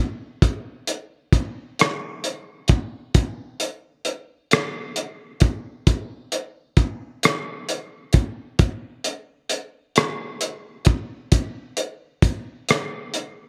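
A cloth-damped, thuddy acoustic drum kit of hi-hat, tight kick and rim click sits up front from 0.4 to 13.4 seconds in this sultry, yearning R&B fragment, moving at 44 BPM in dotted quarters with a straight 6/8 feel, its muffled, gritty, saturated lo-fi tone and rolled-off top caught in a small room with light reverb.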